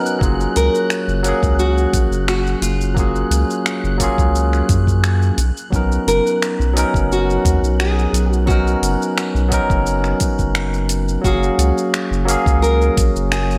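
Blissful and warm, this sunset chillout excerpt drifts over lush major-ninth chords. A barky, up-front tine electric piano with delay and a round, nasal analog bass anchor it, joined by a deep, layered electronic kick and a smooth R&B kit of finger snaps, metallic hi-hat and shaker. A fingerpicked nylon-string guitar melody with fresh-string brightness, audible finger squeak and tape echo enters at 0.6 seconds, while an airy, breathy wind-like texture lingers in the background until 11.3 seconds, all bathed in dreamy plate reverb.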